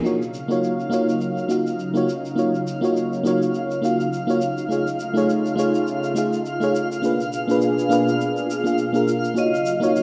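A lush, wet hall reverb wraps this rough home-demo mix, giving the short excerpt a roomy studio glow for its sunset chillout mood, wistful and warm at 103 BPM in Eb minor with a gentle 16th-note swing. Up front, a mellow FM electric piano carries the accompaniment with a soft, round, full-bodied tone, its chorus and digital delay adding shimmer to chords that move from Ebm9 through F7alt and Bb7b9 before returning to Ebm9 at 9.4 seconds. Beneath it, a thick, detuned sawtooth unison pad holds sustained chords with a warbling, vintage character, while a twinkling granular texture enters at 0.4 seconds, sparkling with an octave-up shimmer and its own built-in reverb. A dark, smooth shaker with a rolled-off top sits quietly in the background, filtered and played with brushes in a small-room sound. Just at 9.4 seconds, a close-miked vibraphone with medium mallets and the motor off rings out a single dry, metallic Eb5 as the melody begins.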